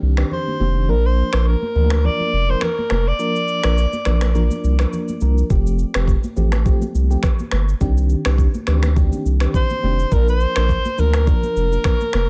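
An afrobeats excerpt opens on a warbling, dark FM electric piano with tremolo and phaser over a thick, saturated sub bass, soon joined by an electronic afro-pop kit of knocking kick, finger snaps, rim click and shaker, ringing high-tuned congas in the background, and a breathy, intimate alto saxophone with digital delay that sings a breezy, romantic melody until 4.2 seconds and returns at 9.6 seconds, all in a dry mix.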